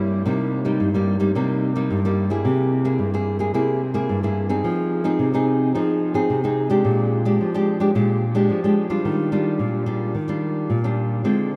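A solo nylon-string guitar opens this short samba excerpt, fingerpicked in a classical style with warm, fresh strings that sit up front and carry a lively yet bittersweet mood. Its harmony moves from C7b13 through Fm7 and Bb6 to settle on Ebmaj9 at 9.0 seconds. A huge, wet reverb places the guitar in a vast, echoing space, so each note trails off into a long ambient wash.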